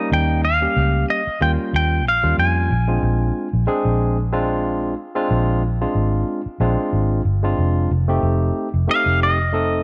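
Gritty and laid-back, this short straight-eighth soul blues fragment rides a barky, lightly overdriven tine electric piano that comps through the whole passage. A dark, foam-muted fingered electric bass sits round and punchy underneath, while a clean, twangy electric guitar carries the melody up high, dropping out at 3.6 seconds and returning at 8.9. Light reverb frames the changes from Eb9 to Bb9 and then F9.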